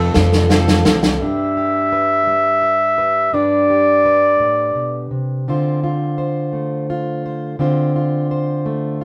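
A close-miked, up-front flugelhorn sings a nostalgic, uplifting melody through the first 5.1 seconds of this slow 6/8 indie folk excerpt in G mixolydian, opening over a brief bed of shimmering twelve-string guitar, woody pizzicato upright bass, a natural snare fill and a very quiet, dark grand piano fill with audible action noise, before a full-bodied fingerpicked steel-string acoustic guitar takes over the accompaniment from 1.2 seconds beneath the horn, all in a rough rehearsal-room sound with moderate reverb.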